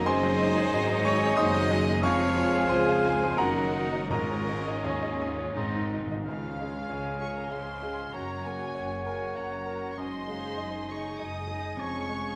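A wet scoring-stage reverb surrounds this lush, lyrical romantic movement for piano and orchestra in Db major and 3/4, moving with rubato at roughly 81-101 BPM, with a clear, up-front grand piano carrying the melody alongside a rich, vibrato-laden chamber violin section in the background. A second violin section, a pure, hollow flute, a warm clarinet and a distant, roomy oboe weave second lines, while a focused viola section accompanies and a smooth French horn section holds sustained chords over lush bowed cellos and double basses. A dark, very quiet trombone section joins the horns until 5.9 seconds, and round, soft-mallet timpani enter at 4.1 seconds with a brief fill that leads into the second section at 6.3 seconds.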